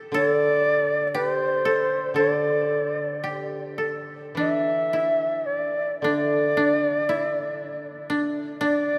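A fingerpicked koto opens at 0.0 s with a woody, up-front second line, and an instant later a reedy, airy shakuhachi takes the high melody with vibrato and tongued notes. Meanwhile a second dry koto plays a low accompaniment beneath them. This austere, calm fragment of Japanese chamber music drifts in rubato around 52-60 BPM in 2/4 on a D suspended pentatonic scale, moving into a new section at 4.4 s, all set in a moderate cathedral reverb.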